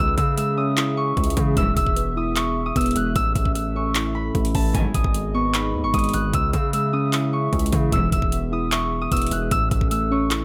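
A menacing, melancholic half-time trap excerpt in C# minor at 151 BPM opens with an up-front, fingerpicked concert harp carrying a ringing melody with delay, over muted felt-like synth keys with chorus, a deep, detuned analog pad holding sustained chords, and a heavy, aggressive distorted 808-style bass. A trap drum kit with knocking kick, metallic hats and handclaps joins at 0.2 seconds and sits up front, while a dark chamber string section adds bowed, vibrato-laden stabs in the background at 1.6, 4.7 and 7.9 seconds. The chords cycle through C#m, E, A and G#m inside a digital ambience.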